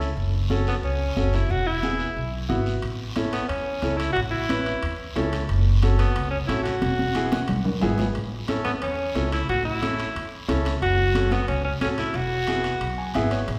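A clear, vintage-toned alto saxophone carries the solo melody up front in this sunny, danceable cumbia, cut from a longer piece, with a growly, woody pizzicato upright bass sitting close beside it. A natural-sounding upright piano supplies accompaniment and adds a short fill at 12.8 seconds, while a raspy guiro joins bright, high-tuned congas and ringing metal-shell timbales, the congas and timbales staying in the background, the timbales entering at 2.8 seconds and a drum fill arriving at 6.8 seconds. The whole performance is bathed in the reverberant glow of a recital hall as it cycles through F#m, Eadd9 and A.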